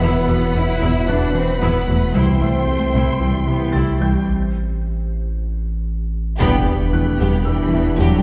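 A rubbery square-bass riff and a saturated sub bass drive this brooding, tense hybrid orchestral-electronic film cue, where a lush, expressive violin section carries the high melody over a second violin line, close viola accompaniment, distant cellos with portamento, very quiet double basses, mellow French horns and background trombones holding sustained chords, a glassy FM pad with ensemble chorus, faint round pluck arpeggios and a muted felt piano with digital delay, all set back in a reverberant scoring-stage space until a break at 4.3 s gives way to a huge, dark impact at 6.4 s.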